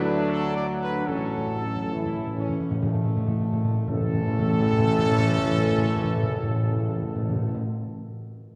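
A wet concert hall reverb with a 2.4-second tail surrounds this brief cut from a triumphant, regal classical ceremonial fanfare in A major and 3/4, moving at 56-83 BPM and slowing down through its first 3.9 seconds. Mellow trumpets with light vibrato and a smooth top carry the melody over sustained chords from distant French horns and a tight trombone section, while a roomy, warm tuba holds the bass beneath them. Close and dry up front, timpani played with soft mallets enter at 1.1 seconds with a round fill as the harmony moves from D to A.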